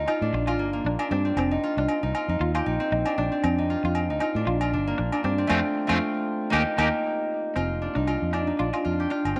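Sunny and danceable, this short highlife guitar band excerpt at 116 BPM in F mixolydian swings its sixteenths as a fingerpicked, up-front concert harp rings out arpeggios through tape echo, a round, foam-muted fingered electric bass anchors the low end, a twangy, slightly broken-up electric guitar fills in accompaniment, and ringing agogo bells keep time, all within a moderate spring reverb, with the band hitting an accent from 5.5 to 7.6 s over chords cycling through Bb, F and Eb.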